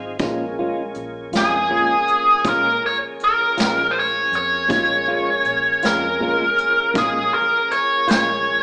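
A brush drum fill opens this short slice of a slow, mournful blues in 12/8, set at 53 BPM with a straight feel, as a smooth tonewheel organ lays down sustained chords through chorus vibrato and a slow rotary speaker. Beneath it, a dark, round, foam-muted electric bass sits far in the background, while the acoustic brush kit, with its punchy kick, medium-tuned snare and rolled-off top, keeps hi-hat, kick and snare going from 0.2 seconds, when the harmony settles on Bbm7. A clean, compressed electric guitar, fingered and shimmering with harmonic tremolo, adds accompaniment in the middle register. At 1.4 seconds a biting, bright lead guitar enters up front, overdriven and picked, singing a soulful melody high above the band. The whole ensemble is bathed in the lush reverb of a church or concert hall, yet it comes through with a small-speaker, vintage character.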